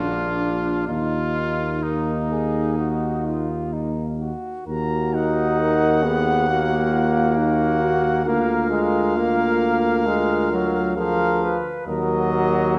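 A clear trumpet melody with light vibrato leads this grave, heroic classical brass quintet excerpt in Eb minor at 66 BPM, its rubato 4/4 pulse uneven, as a mellow flugelhorn sings a distant second line, a bright trombone and a smooth-topped French horn in the background fill the accompaniment, and an up-front bass trombone anchors the bass, all bathed in a wet scoring-stage reverb as the harmony moves from Bb to Ebm and through Bb/D before settling back on Ebm at 11.9 seconds.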